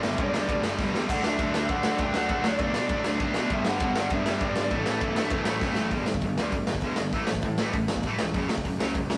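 A boomy, gritty garage drum kit sits up front with a pumping small-room sound, driving this upbeat, rowdy punk rock fragment alongside a lo-fi lead guitar melody that drops out at 5.6 seconds, a bright overdriven stack-guitar riff joined by a very quiet second one, a double-tracked fuzz guitar riff that ends at 5.9 seconds, and a growly fuzz bass in the background, captured as a rough rehearsal-room recording with moderate stone-room reverb.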